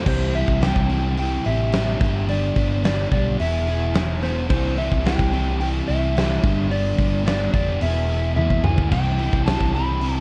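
A straight, driving 4/4 groove from a big acoustic rock kit with a fat snare and punchy kick in a bright stone room carries this brooding classic rock excerpt, where an up-front, double-tracked crunchy overdriven guitar picks a riff bathed in spring reverb, a round, dark hollow-body short-scale bass anchors the low end, and a slightly broken-up electric slide guitar sings the melody over a C, G and E progression, all with the dry character of a cassette recording and a drum fill at 8.4 seconds.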